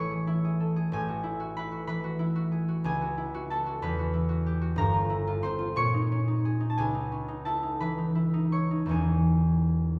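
In a rubato 6/8 lilt of roughly 53-63 BPM counted in dotted quarters, this graceful, serene classical excerpt features a solo concert harp, fingerpicked and ringing up front across a span from E1 to C#6, drifting through lush colors from E69/A and C#m7 to Gm11 and A#m11 before settling on Emaj7 at 8.9 seconds, all bathed in a wet concert hall reverb with a 1.9-second decay.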